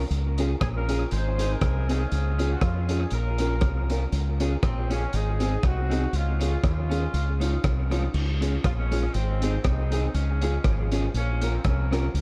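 Joyful and bouncy, this ska excerpt moves at 120 BPM in 4/4 with a light swing on the eighth notes, sitting in Db major and cycling through Db, Ab and Bbm with a brief Dbadd9 color before the phrase repeats at 8.1 seconds. A round, punchy fingered electric bass anchors the low end from the first moment, joined at 0.1 seconds by a crunchy breakbeat kit of tight kick, rim click, hi-hat and dark cymbals, its saturated, gritty tone and rolled-off top placed up front. Behind them, an electric guitar at the edge of break-up adds picked accompaniment soaked in spring reverb and dub echo, while a woody, boxy upright piano with audible action noise and long sustain adds stabs that also trail dub echo. A clear, tight horn section carries the melody with light vibrato and a vintage pop-style punch, its lines likewise thrown into dub echo. The overall production is dark and warm, wrapped in studio reverb, and the passage is cut from a longer piece.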